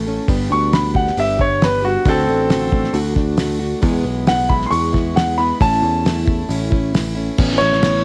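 A lightly reverberant home cassette recording frames this nostalgic folk and heartland rock excerpt, where a clear, intimate grand piano with audible action noise and long sustain carries the solo melody up front over a bright, full-bodied jumbo acoustic guitar with finger squeak, a round, dark electric bass, and a cloth-damped, thuddy drum kit with a fat snare, tight kick and dark cymbals, as the chords move from G through D and E to A before landing on Aadd9 at 7.4 seconds.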